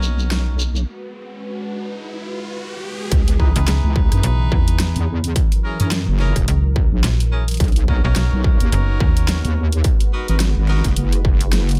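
A dry, close sound frames this playful, swaggering glitch hop excerpt at 107 BPM in 4/4, with a 16th-note swing and a C# dorian colour moving through chords such as Bmaj7, G#m7, C#m7 and F#7. A heavy, wobbling wobble bass with a detuned, chorused square-and-sine tone sits up front throughout, while a smooth, sawtooth analog pad holds sustained chords in the background and a jazz-style horn section punches stabs with delay, both pumping against the sidechain. The opening brings a grainy, mellow shekere, a dubstep drum kit of bright hats, rim click and a huge snare under a filter sweep, and an electronic riser building through the break. The drop lands at 3.1 seconds with a distorted, tape-warm electronic kick up front. From 3.6 to 9.4 seconds a snappy, metallic FM slap-like bass with tube saturation joins the low end, adding a digital bite.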